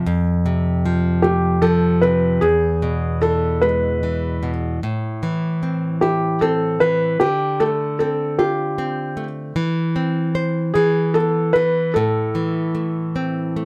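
A felt-muted upright piano carries the melody in this gentle, dreamy lullaby excerpt, its soft, intimate, vintage tone sitting up front from 1.2 seconds. A bright, fingerpicked nylon-string guitar accompanies from the opening, moving through F, E, Am, Dm7, C/E and E5 before settling on Am in A minor. The children's piece drifts in a rubato 6/8 at 50 BPM, touched by light reverb.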